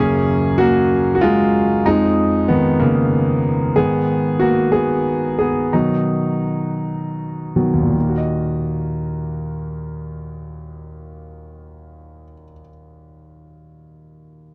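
Aching and dramatic, this short excerpt from a longer pop piece in Eb minor moves in a slow 6/8 at around 49-63 BPM, carried by a single concert grand piano playing accompaniment from Eb2 to Eb5. The piano sounds clear, smooth and vintage, with a deep bass and an up-front presence, heard alone through the opening 8.0 seconds as the tempo slows from 3.8 seconds, passing through Gb, Db/F, Abm and B before settling on Ebm at 8.0 seconds. The sound is dry and close, with little reverb, in the manner of a 1970s studio recording.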